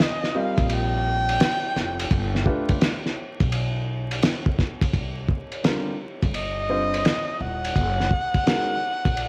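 A dark, woody erhu leads this cool, mellow jazz-hop fragment, bowed up front and close with vibrato and portamento through cassette tape echo, taking its solo over the first 4.9 seconds as the harmony moves from Eb to G7 before shifting to Cm and F#69. Beneath it sits a cloth-damped, thuddy drum kit that is muffled, gritty and saturated, with a fat snare, tight kick and dark cymbals, while a woody upright piano enters at 0.3 seconds and a thumpy pizzicato upright bass on gut strings joins at 0.6 seconds. The 85 BPM groove in C dorian swings its 16ths at 66%, tuned to A4 = 436 Hz, and the whole home cassette recording carries vinyl crackle, light reverb and a small-room ambience.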